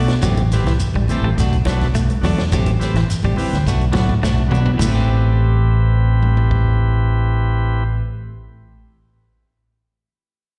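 A straight 4/4 groove at 105 BPM drives this short afrobeat excerpt in A dorian, carried by a compact cocktail drum kit with a punchy kick, a high-tuned snare and dark cymbals, plus a drum fill from 4.2 to 4.8 seconds that leads into the second section. Very quiet, ringing congas sit close and dry beside a grainy, mellow shekere, both of which stop at 4.9 seconds. Up front, a round, dark fingered electric bass anchors the harmony as it moves between Am7 and Bm7. A hollow-body semi-hollow guitar picks low arpeggios with spring reverb and slapback echo until 5.0 seconds, while a clean electric guitar plays stabs and a reedy, bright tonewheel organ through a stationary speaker fills in the accompaniment, both also touched by slapback echo. The whole performance has the feel of a live gig heard through the venue's PA, with a recital-hall reverb around it that gives the driving, defiant mood a roomy sheen.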